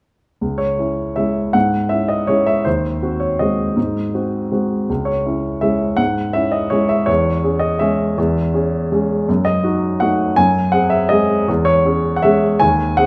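A warm, polished baby grand piano plays alone from 0.4 to 13.1 seconds, sitting present and up front in a moderate recital-hall reverb. This wistful, nostalgic classical waltz in C# minor moves at 162 BPM in 3/4, its beats uneven and pulled by rubato. The passage, cut from a longer piece, spans the piano from C#2 to G#5 over chords that begin on C#m and pass through G#7/D#, D#dim/F# and G#7/F#.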